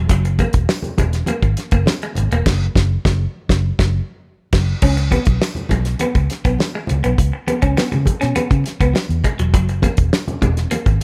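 A dry, up-front 70s drum kit with a fat snare and tight kick drives this funky, 102 BPM funk excerpt in C# dorian, alongside a dark, round, foam-muted fingered bass, a clean, twangy picked electric guitar riff, low-tuned thick-skinned congas and a very quiet, jingly tambourine, with a band accent from 2.5 to 4.8 seconds, chords moving from F# to C#7(no3) at 4.8 seconds and F#9 at 9.5 seconds, all under light reverb.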